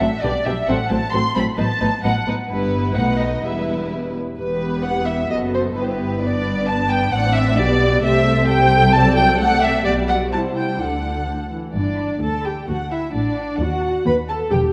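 A straight, brisk pulse in 2/4 at 130 BPM drives this cheerful, graceful classical-period movement for string orchestra, an excerpt cut from a longer piece that begins in E minor and brightens into G major at 8.0 s. Every section plays muted, con sordino, with vibrato, giving the ensemble a dark, veiled colour throughout. The first violins carry the melody from G4 to C6 with a soft attack, sitting distant in the mix, while a second violin line sounds up front beneath them. The violas supply a close, gently attacked accompaniment, and the cellos and double basses share the bass with a smooth top, the basses reaching down to E1. A moderate concert hall reverb of 2.4 seconds surrounds the strings, and the passage turns to a contrasting section at 11.7 s that closes on a D#dim chord.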